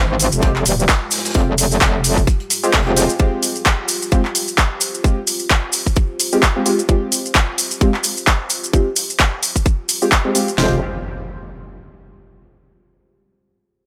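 Swung 16ths at 130 BPM in 4/4 drive this aggressive, gritty bass house passage in F minor, where a tight garage kick and cracking snare, overdriven house-kit handclaps and hi-hat with a large-room sheen, a very quiet vintage kit of snare and hi-hat, and grainy, close maracas play alongside nasal, band-passed sawtooth chord stabs on Fmadd9 with lush chorus, dub echo and a filter sweep, while a metallic FM wobble bass snarls with tube saturation until 3.1 s, a deep, moody wave-folded pad hovers in the background, the pad, stabs and bass all pump with sidechain, and an electronic impact lands at 10.6 s as the bass briefly returns.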